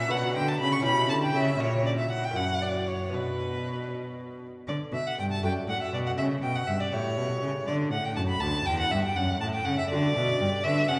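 Solemn and grave, this fragment of a baroque-style sonata movement in 6/8 sets a clear, vibrato-laden bowed violin melody up front over a rich, close cello bass line and a delicate fingerpicked lute on doubled gut strings, all bathed in the long, wet reverberation of a church.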